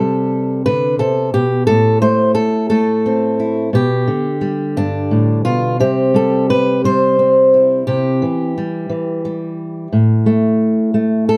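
A fingerpicked steel-string acoustic guitar opens this short, peaceful folk piece, playing alone and sitting up front in the mix. It moves at a slow 59 beats per minute in a straight 6/8 lilt, in C major, with its tuning set to A4 = 441 Hz. The guitar spans G2 to C5 and carries a hopeful, concert-quality tone, with the occasional finger squeak adding an intimate, human detail. The harmony starts on a C5 chord and moves through A minor and G over B before returning to C at 5.8 seconds, then settling into an unharmonized close at 9.9 seconds. A moderate studio reverb gives the instrument a gentle sense of space, and this passage, cut from a longer piece, ends at 11.4 seconds.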